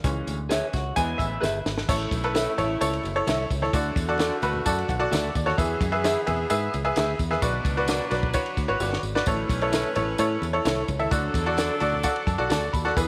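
A bright, slightly detuned upright piano leads this joyful, danceable excerpt of uptempo 1960s-style soul in A major, at 130 BPM in a straight 4/4. The piano sits up front with a woody, worn edge, joined from the start by a punchy, foam-muted fingered bass, a dry compact cocktail drum kit with dark cymbals and a high-tuned snare, and a jingly tambourine. At 0.5 seconds a twangy, lo-fi guitar through a small old amp plays a short riff, while a second guitar at the edge of break-up adds compressed stabs in the background, bathed in spring reverb. At 1.9 seconds the music moves into a new section, and an edgy, close-miked saxophone section with light vibrato takes up a jazz-style second line behind the band, its sound carried on tape echo. Very quiet low-tuned congas with a thin skin, played with soft hands, fill out the groove, and the drums and piano each add short fills along the way over a progression that moves through A, D, E and Bm.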